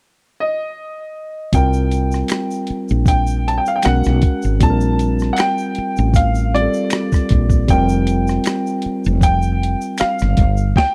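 A clear, up-front baby grand piano carries the melody alone from 0.4 s in this introspective, smooth neo-soul and R&B excerpt, with a short, natural sustain. At 1.5 s the groove arrives: a compressed, pitched-down boom bap drum kit with a thumpy kick and high-tuned snare, a dark, round fretless bass sitting up front, and a barky overdriven tine electric piano heard through a combo amp, all lightly swung. A soft egg shaker and finger snaps sit in the background of this dry, close, 1970s-style small-room recording.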